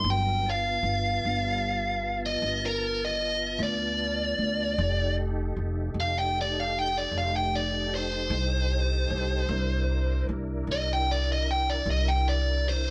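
A straight 12/8 pulse at 51 BPM (dotted quarters) sets up this laid-back yet rollicking slow blues, tuned to A4 = 436 Hz and cut from a longer piece, with the harmony moving through G9, F9 and C9. Up front, an overdriven, biting electric guitar carries the picked melody while a woody, pizzicato upright bass with steel strings holds the low end. Alongside them, a clean, clear tonewheel organ sustains chords through a slow rotary speaker and chorus vibrato, all captured as a band playing live in one room with light reverb.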